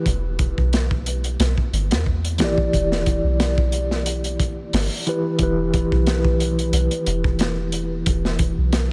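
Dark and melancholic, this short trip hop fragment sets a mellow tine electric piano, carrying tremolo and tape echo, over a deep, round 808-style bass and a crunchy, gritty breakbeat kit of tight kick, snare and hi-hat with a lightly swung feel, all held on an E minor chord for about 8.9 seconds in a dreamy mix soaked in huge ambient reverb.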